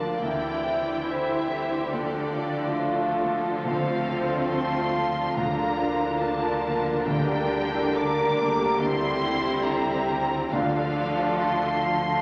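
A veiled, dark string sound sits in a reverberant recital hall, opening this bittersweet, longing film-score excerpt in D minor at a rubato 70 BPM in 4/4, where muted violins carry the melody over a second violin line, a hollow, airy flute ensemble, and lush violas in the background. A felt-muted upright piano adds soft accompaniment and a ringing, thumb-plucked concert harp plays quiet arpeggios, while a distant French horn section holds sustained chords and muted cellos and double basses anchor the bass on D. Timpani played with medium mallets enter at 3.6 s and fall away at 11.8 s beneath a progression over a D pedal.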